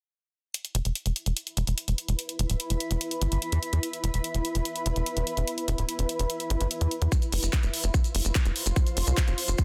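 A tight, punchy sequencer bass drives this psychedelic trance excerpt at 146 BPM in 4/4. It sits up front with a sawtooth and square-wave tone, a fast-attack filter pluck that decays, and a moving notch. A garage drum kit of produced, layered handclaps and hi-hat starts at 0.5 seconds. From 2.1 seconds a granular cloud pad adds a detuned, blurred sine texture with slow attack, long release, built-in reverb and sidechain pumping. At 7.1 seconds, as the harmony moves from E5 to F5, a tight electronic kick drum arrives up front, joined by grainy acoustic maracas in the background. Light digital ambience surrounds a dense, heavily limited modern master, giving the piece a driving, psychedelic mood.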